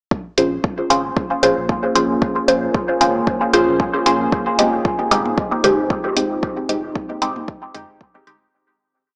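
A muted, phaser-laden dub chord stab sits up front with dub echo and sidechain pumping over a tape-warm four-on-the-floor kick and closed hi-hat in this meditative, hazy dub techno groove in Bb minor at 114 BPM, where a round sine sub bass hums in the background, a moody detuned pad with chorus enters at 1.3 s, echoing electronic toms join at 4.6 s, and the whole piece moves from Bbm7 to Fm7 in a lush hall with a small speaker sound before fading out from 5.7 s.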